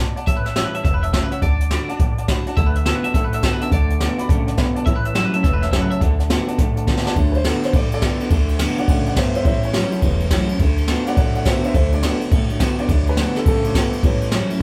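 Rockabilly at a brisk 209 BPM in D major, with a swung, rollicking, retro feel, this excerpt moves between A7 and D. The band plays live in one room with light reverb: brushes on a drum kit sit up front with dark cymbals, a high-tuned snare and a boomy kick, while a pizzicato upright bass with gut strings thumps woodily in the background. A mellow, dark upright piano and a very quiet, full-bodied dreadnought acoustic guitar fill out the accompaniment. A clean, twangy electric guitar carries the melody through a phaser and slapback echo from 0.3 to 6.0 seconds, and from 2.6 seconds a second electric guitar through a small old amp plays a slightly broken-up riff with tremolo. After a drum fill at 6.9 seconds, the piano takes a solo from 7.2 seconds to the end.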